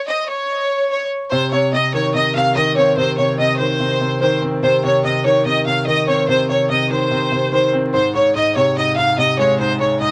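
Wrapped in vinyl crackle and moderate studio reverb on a home cassette recording, this dark, menacing hip hop passage in C phrygian moves at 145 BPM with a half-time feel, as a biting, earthy chamber violin section with light vibrato carries the bowed melody up front through cassette-tape coloring, alone until a clear, open concert grand piano with deep bass joins at 1.3 s to accompany over Cm before the harmony shifts to Ab at 7.9 s.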